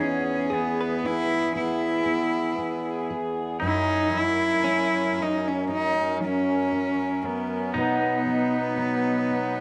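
An intimate, heartfelt acoustic folk-pop ballad at a slow 58 BPM in 4/4, moving from E to F# and then B across this brief excerpt. Up front, a single cello carries the melody with a soft, airy sul tasto bow and light vibrato, over a dark, full-bodied fingerpicked dreadnought guitar and the reedy, breathing chords of a hand-pumped harmonium. In the background, a bright, twangy pedal steel adds a second line with slide and volume swells, while a clean, compressed electric guitar recorded direct joins at 0.5 seconds with tremolo-treated arpeggios, all set in a wet plate reverb.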